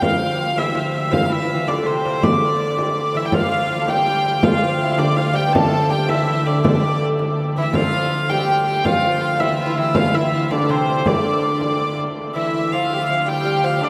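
A mysterious, driving medieval dance in D minor at 109 BPM in 6/8 opens with a clear, biting, nasal hurdy-gurdy up front on the melody and a delicate, fingerpicked lute with gut double strings on a second line, both touched by tape echo. Beneath them sit a floating, distant viola da gamba drone on D2 and a deep frame drum. A rich, smooth fiddle with light vibrato joins on another second line at 3.1 s, the frame drum drops out at 12.1 s, and a new section begins at 12.2 s, all within a dreamy mix soaked in huge ambient reverb.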